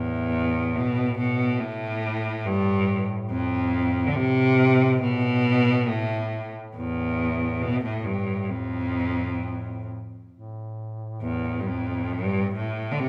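This Caucasian folk lament in A minor moves at a free, rubato 69 BPM, its mood longing and mournful throughout this 13.1-second excerpt from a longer piece. Up front, a single bowed cello carries the melody between E2 and D3 with a bright, focused tone and vibrato. Beneath it, a close-miked duduk sits in the background, holding a mellow drone on A2 with vibrato and scooped notes, and both sit in the moderate reverb of a scoring stage.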